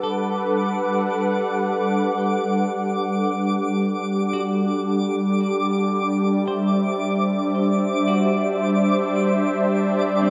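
Ambient excerpt at 56 BPM, serene and weightless, where a smooth, detuned sawtooth pad with chorus sits up front holding sustained chords from Gmaj9 to Cadd9/G at 4.3 seconds, a very quiet clean semi-hollow electric guitar picks arpeggios beneath it, and a twinkling granular texture with octave-up shimmer and its own reverb sparkles high above, all set in a lush hall reverb with a dark production.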